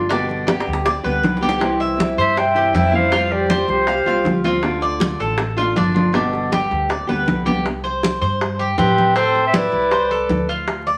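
Vinyl crackle and a wet studio reverb frame this short excerpt of danceable Cuban son and guajira in C major, moving at 159 BPM in a straight 4/4. Up front, a metallic, double-strung Cuban tres picks arpeggios beside a small, fingerpicked nylon-string guitar that drops out at 7.7 s. Beneath them, a woody pizzicato upright bass, thick-skinned congas and tight, high-tuned bongos, both close and dry, carry the beat, with a drum fill near the start. A clear, smooth clarinet takes the melody from 2.2 s over a pure, crisp-edged concert flute on a second line, and both return near the end.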